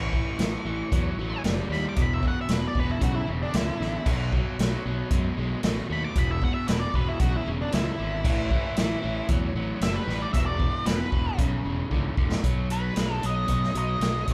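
A straight 4/4 beat at 115 BPM drives this sunny classic rock excerpt, with a vintage acoustic kit sitting up front, its punchy kick and medium-tuned snare rounded by a rolled-off top, beneath a growly fuzz fingered bass and a crunchy, double-tracked picked guitar riffing low over A, E5 and B5 changes. A dark octave-fuzz lead guitar carries a solo from the start until 12.4 seconds, when a drum fill gives way to a short new section on B. The band sounds as if it is playing live together in one room, with light reverb.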